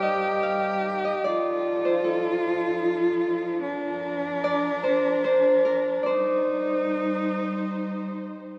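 A bright, ringing Celtic harp, fingerpicked and up front, carries this haunting, mournful Celtic slow air in a free-flowing 3/4, joined by a single bowed cello with rich vibrato as a second line and a lush, biting studio string section holding sustained chords low in the mix, set in a long cathedral reverb across this 8.6-second fragment.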